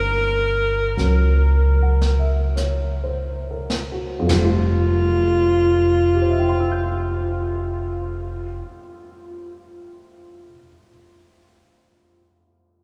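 Jazz ballad in a romantic, tender mood, cut from a longer piece. It slows from the opening as a breathy, whispered alto saxophone carries the melody up front with vibrato, scooped notes and a soft, intimate subtone, over a woody pizzicato upright bass and a warm upright piano. A brush drum kit with dark cymbals adds a fill from 1.0 seconds, the harmony settles from Gb7 onto Fmaj9, and after the saxophone and bass stop at 8.6 seconds the piano lingers alone until 12.8 seconds, all washed in a vast, echoing cathedral reverb.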